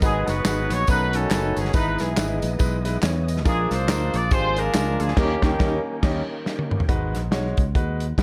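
Swung eighths in 4/4 drive this short uptempo gospel excerpt with a soulful, solemn air, as a tight, vintage-toned horn section carries the melody up front over a clear, long-sustaining baby grand piano, a gritty overdriven tonewheel organ holding sustained chords through a slow rotary speaker, a direct, amped fingered electric bass, a polished acoustic drum kit with a punchy kick, and close, dry tambourine and handclaps, with the band hitting an accent from 5.2 seconds before a drum fill at 6.5 seconds leads into a brief new section at 6.9 seconds.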